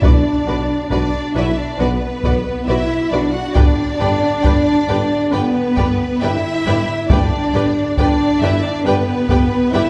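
This cinematic, epic orchestral film score opens with the full ensemble at once: a taiko ensemble struck with hard sticks drives the music forward at 68 BPM in a straight 4/4, setting a dramatic, relentless mood. Over it, a lush violin section carries the melody with smooth, even vibrato, while a second, more focused violin line sits in the background above it. A viola section fills the middle with expressive portamento, and a mellow French horn section holds soft-attacked sustained chords that sound distant and roomy. Underneath, a cello section with a gentle attack, a far-off bowed double bass section and a close-miked tuba in the background form a deep, weighty bass, as the harmony moves from B minor to G at 3.6 seconds. The whole piece is bathed in a wet scoring-stage reverb and heard from further back in the room, in this short passage cut from a longer piece.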